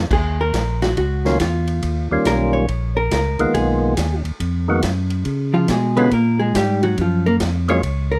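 A percussive tonewheel organ carries the melody from 1.3 seconds, up front and fat-toned, with third-harmonic percussion, vibrato, light overdrive and a slow rotary speaker. This late-night, soulful soul jazz organ trio excerpt swings at 140 BPM in 4/4, in Eb minor, tuned to A4 = 438 Hz. A second tonewheel organ plays the bass line throughout, also overdriven and turning through a slow rotary speaker with a warm, fat body. A dark, clean, compressed hollow-body electric guitar sits up front and is featured as a picked solo from 0.1 seconds, while a distant, roomy acoustic drum kit with a boomy kick, medium-tuned snare, hi-hat, ride and crash swings behind the others. The harmony moves from Ebm7 through Eb7, Abm9 and Db7 to Gbmaj9, all set in a small room ambience, in a fragment cut from a longer piece.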